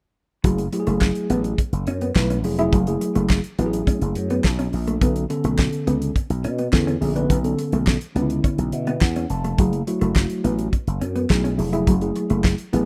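A straight 4/4 groove at 105 BPM drives this funky, danceable slice of early-eighties boogie funk in F# minor, cut from a longer piece. A damped 70s drum kit sits up front with a fat snare, tight kick, hi-hat and handclaps, all dry and acoustic. Beside it, a growly slap bass pushed through an envelope filter sounds bright and punchy, carrying the low end from E#1 to B2. A mellow tine electric piano plays clean accompaniment through its built-in speakers, moving from F#m9 to Bm9 at 5.0 seconds and back at 9.6, with a short fill of its own starting at 8.4 seconds. A dark, compressed electric guitar repeats a fingered riff, shimmering with analog chorus. The whole thing has the small-room feel of a rough home demo mix.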